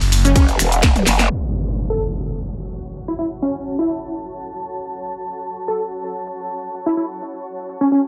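A growling, saturated wobble bass with sidechain pumping bursts in at 0.4 s alongside a tight electronic kick in this gritty, aggressive bass house fragment at 127 BPM in F# minor, as a low-pass-filtered garage kit with a cracking snare, snaps, shaker, ride and toms swings beneath a punchy, detuned sawtooth lead carrying 12-bit grit, lush chorus and delay, while an up-front impact lands at 1.3 s with the F#m chord and filter sweep, and a blurred granular pad drifts in from 2.2 s.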